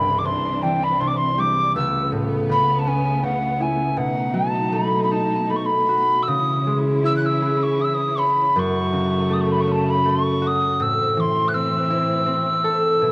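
Wistful and tender, this Celtic slow air in 3/4 drifts with a rubato feel, taken from a longer piece. A hollow, airy tin whistle carries the melody up front with a straight, tongued tone, a touch of chiff and a slapback echo. Beneath it, a fingerpicked concert harp rings out clearly while a muted string section, bowed con sordino with vibrato, adds dark, veiled sustained chords, all captured dry in an outdoor setting.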